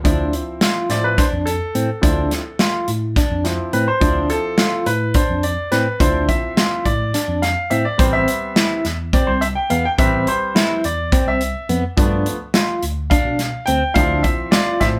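Progressive instrumental band music in 7/8 at 211 BPM counted in eighths, tense and intricate in D dorian, with a clear, up-front grand piano soloing from 0.1 s over Dm7, Am7 and G7 changes, a worn, slightly out-of-tune tine electric piano carrying the bass line through its built-in speakers, a punchy, airy country drum kit with a medium-tuned snare, and a slightly broken-up, fingered electric guitar playing arpeggios with harmonic tremolo, the band heard live in one room with moderate studio reverb in a passage cut from a longer piece.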